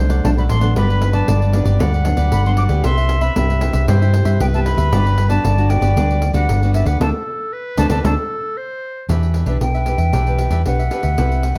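Nostalgic and bittersweet, this samba and choro excerpt sets an airy, distant silver concert flute melody over fingerpicked classical nylon-string guitar, a bright, picked cavaquinho and a jingly pandeiro played with soft hands. A dark, round hollow-body short-scale fingered electric bass sits up front, while a clear clarinet in classical style carries a second line until 9.1 s, through a band accent from 7.0 s, as the harmony moves through Gmaj7 and Cmaj7 toward Em7. Light reverb gives the ensemble a gentle sense of space.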